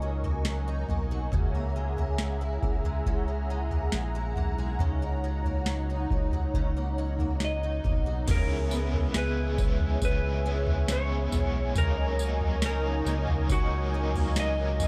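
This ethereal, melancholic dream pop excerpt opens on a smooth, detuned analog pad holding soft-edged sustained chords with chorus, while a picked twelve-string acoustic guitar spins bright, shimmering, octave-doubled arpeggios through ensemble chorus and delay. A round, deep analog bass sits up front beneath them, its sawtooth and sine tones colored by ring modulation. A booming analog drum machine arrives almost at once, pairing a deep kick and crisp snare with tambourine, toms and crash cymbal in a tape-warm, electronic sound. At 7.4 seconds a dark, clean lap steel guitar takes the slide melody with delay, and at 8.3 seconds a cranked, double-tracked stack guitar adds overdriven accompaniment shaded by tremolo and analog chorus. The harmony rests on a steady C# bass under shifting chords, and light reverb with digital ambience gives the production a dusky, enveloping glow.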